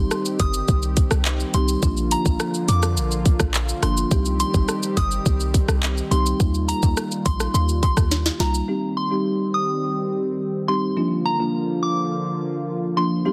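Up-front island pop drums with a tight kick, sharp snare and metallic hats drive this bouncy, hypnotic C minor dancehall excerpt at 105 BPM alongside a punchy 808-style bass, a woody soft-mallet folk marimba and a smooth, detuned analog pad (both pumping to the sidechain), and a pure, gentle FM synth bell melody with chorus and delay, until a drum fill at 8.1 s leaves the marimba, pad and bell to carry on in light reverb from 8.7 s to 13.3 s.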